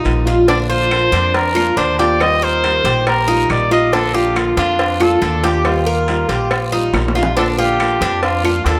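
A punchy, vintage trumpet with light vibrato and tape echo sits up front from 0.5 s, carrying a pop-style solo melody over a danceable Cuban son and guajira groove at 139 BPM in Bb major, moving between Bb and Ebadd9. Beneath it, a bright, metallic tres picks arpeggios on its double strings, a dark flamenco guitar is fingerpicked with audible finger squeak, and a thumpy pizzicato upright bass holds down the low end. Round, low-tuned cowbell and bongos, a raspy guiro in the background and very quiet, woody claves fill out the percussion, with a drum fill at 6.9 s, in a moderate large-studio reverb on this cut from a longer piece.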